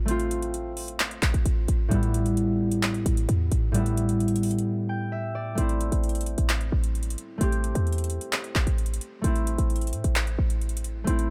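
Melancholic and brooding, this half-time trap cut pairs a mellow, fingerpicked concert harp with ringing tones up front and a punchy, tight 808-style bass whose sine body carries a noise layer, striking with a fast attack before decaying. An electronic trap drum kit with metallic hi-hats and handclaps enters at 0.1 seconds, overdriven and re-recorded in a small room, and the whole is kept dry with little reverb. After a break from 4.7 to 5.6 seconds, the harmony shifts from F/A and Em/A to settle on A minor as a new section begins.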